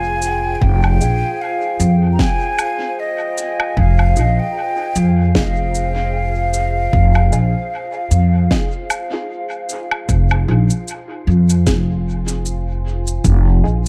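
A dark, hazy mix with light reverb opens this spacious ambient dub excerpt in F minor at 76 BPM with a swung 16th feel, where a breathy, close-miked flute carries the melody through dub echo until 9.3 seconds over a warbling, lo-fi pad, a woody pizzicato upright bass up front with tube saturation, an overdriven punchy electronic kick, an overdriven shaker, woodblock and snare kit with dub echo, and a muted, phased chord stab in the background under a filter sweep, as the harmony moves from Fm to Fm7 at 10.1 seconds.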